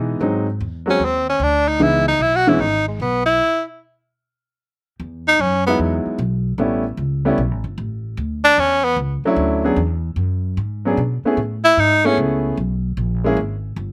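Swung eighths in 4/4 carry this cool, smoky jazz excerpt, where a woody pizzicato upright bass plays throughout beneath a clear, intimate baby grand piano with audible action noise, while a breathy, up-front tenor saxophone with vibrato and scooped notes leads from 0.9 seconds, the band hits a stop at 3.4 seconds, and the dry, outdoor-sounding take moves at 5.0 seconds into a second section of rich extended chords.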